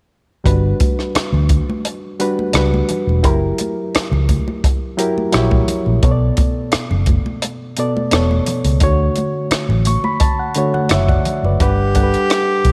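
A barky, lightly overdriven reed electric piano stands out in this smooth, lush 1970s-style soul excerpt at 86 BPM, adding a fill from 9.5 seconds over a round, foam-muted electric bass, a dry compact cocktail kit with punchy kick, hi-hat and rim click, and high-tuned congas in the background, before a breathy, close-miked tenor saxophone with slapback echo enters at 11.6 seconds in a small room with light reverb.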